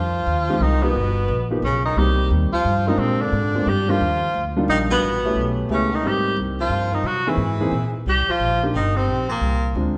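Jazz waltz in 3/4 at 177 BPM, swinging and moody, taken from a longer piece and tuned slightly flat of standard pitch at A4 = 437 Hz. A clear tenor saxophone with vintage vibrato carries the melody up front, while a bright baritone saxophone with light vibrato plays a second line in a lower register; both horns stop at 9.7 seconds. A woody pizzicato upright bass with steel strings sits up front and anchors the bottom from the first beat, and a warm concert grand piano with deep bass enters at 0.5 seconds to comp underneath. The harmony moves through colourful jazz changes such as Gaug, Bb9, A9 and C7alt before a shorter second section settles on Cm7 and Bb7 at 8.1 seconds. A wet recital hall reverb gives the group the spacious resonance of a church or concert hall.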